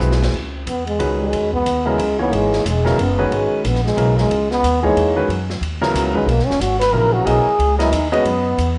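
A breathy, whispered trombone with light vibrato solos up front from 0.3 seconds in this hypnotic, searching modal jazz excerpt in C# dorian at 182 BPM in a swung 3/4, entering after a short drum fill over a clear, long-sustaining grand piano moving from C#m11 to B/C#, a woody pizzicato upright bass, and a softer acoustic drum kit with dark cymbals and a boomy kick, all set in a wet echo-chamber reverb with small-room ambience.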